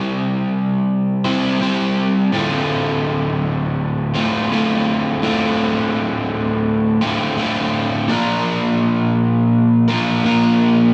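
Brooding and melancholic, this short rock excerpt moves at 83 BPM in straight 4/4, in D minor, with a single crunchy overdriven electric guitar playing alone from start to finish, picked and double-tracked, sitting up front with a warm, gritty bite across a range from D2 to C5. The chords shift from C to Dm7 at 2.3 seconds and settle on Bb at 8.1 seconds, while a wet, large studio reverb throughout gives the sound the feel of a band captured live in one room.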